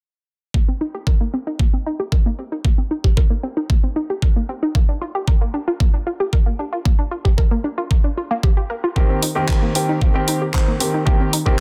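Nu-disco at 114 BPM in C minor with a groovy, cosmic mood, built on a round, detuned analog pluck arpeggio with chorus, cassette tape coloring, delay, sidechain pumping and a filter sweep over Cm7 and Gm7, driven from 0.5 seconds by an overdriven, knocking electronic kick up front, joined at 9.0 seconds by a present grand piano with long sustain and tape echo and at 9.2 seconds by an overdriven pop drum kit of handclaps and hi-hat, in a dry, dense, heavily limited mix.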